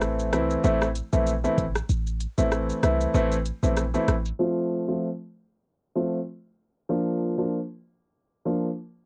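Bouncy and tough, this dancehall fragment sets a polished, up-front baby grand piano over a deep, boomy sine 808-style bass and a produced electronic afro-pop kit of crisp hi-hat, deep kick, rim click and shaker, with the piano and drums both carrying a cassette tape color in a dry, low-passed home recording. The kick drops out at 1.9 seconds. Once bass and drums fall away near 4.4 seconds, the piano carries on alone from Am into F and Bb chords until 8.7 seconds.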